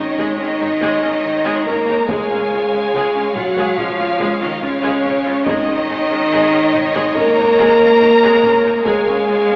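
Epic and heroic, this cinematic orchestral film score passage moves at a stately pace, with a mellow, up-front French horn section holding sustained chords over rich, lush violins carrying the expressive melody and a second violin line tucked in the background. Clear violas fill in the accompaniment while close cellos and a background double bass section anchor the bass, and a taiko ensemble struck with heavy sticks enters at 0.2 seconds from further back. The chords alternate between Absus4 and Db, and the whole is bathed in a wet concert hall reverb yet carries a thin, AM-radio coloring.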